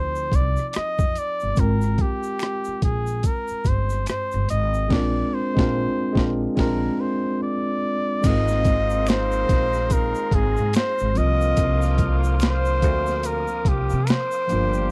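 A warm, vibrato-tinged flugelhorn carries the melody over a worn, slightly out-of-tune tine electric piano and a woody pizzicato upright bass in this soulful, introspective neo-soul R&B excerpt at 72 BPM in C minor with a swung sixteenth feel, joined almost at once by a quiet tube shaker with finger snaps and a gritty, pitched-down boom bap drum kit with a thumpy kick and high-tuned snare, before a lightly overdriven tonewheel organ on a slow rotary speaker and a distant, roomy horn section with slapback echo enter at 8.2 s, the whole captured in a dry, close 1970s-style studio sound.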